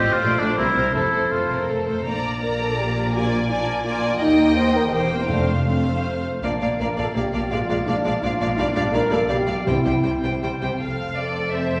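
Graceful and spirited, this classical passage in a flexible triple time sets a dark, expressive violin section on the melody, sounding distant, over a smooth, even second violin line, bowed violas, soft-attack cellos in the background and far-off double basses, while a warm, up-front solo oboe with light vibrato sings only until 1.7 s, a mellow, tight French horn section holds sustained chords from 2.1 s, and close, dry timpani struck with hard mallets land twice in the background, the whole heard through a wet recital hall reverb.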